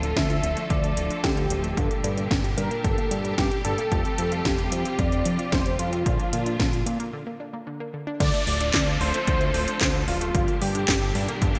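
An overdriven, punchy electronic kick enters at 0.2 s under a house drum kit of cracking snare, metallic hats, handclaps and crash, setting a straight, danceable italo disco pulse, with a fat, detuned sawtooth bass thickened by tube saturation. Above it, a bold, dark unison lead with vibrato and delay carries a sunny melody over lush bowed strings roughened by vintage 12-bit sampler grit, while a very quiet, round analog pluck with chorus and phaser spins arpeggios. After a short break at 7.1 s, a faint electronic downlifter sweeps in at 8.2 s, all set in a bright 1980s-style digital hall ambience in this cut from a longer piece.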